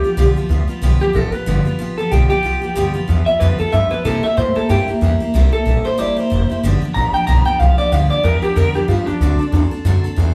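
A brisk 186 BPM swing in 4/4 drives this rollicking, upbeat rock excerpt in G mixolydian, with a thumpy, woody upright bass up front under a bright, full-bodied picked steel-string acoustic guitar whose fresh strings show a little finger squeak. Over them a twangy, slightly broken-up electric guitar through a small old amp takes a clean solo on the melody, stopping at 9.7 seconds as the chords move from G7 through C7 and back to G7 before landing on D7. The band plays live together in one room, set in a moderate large studio reverb.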